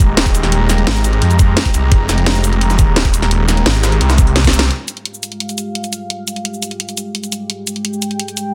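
A driving straight 4/4 at 172 BPM opens this tense, futuristic dark technical drum and bass excerpt in F minor on a dropped Fmadd9. A knocking electronic kick, an up-front drum and bass kit with cracking snare, hi-hat and cabasa, and a very quiet, gritty, pitched-up breakbeat kit drive a snarling, detuned sawtooth bass that growls with distortion and sidechain pumping. All of this sits over the moody, chorused analog pad with its slow attack and sub octave. Then a drum fill from 4.4 seconds and a band accent at 4.6 seconds give way to the pad carrying on through 8.5 seconds with only the drum and bass kit, all in a dry, dense, heavily limited mix.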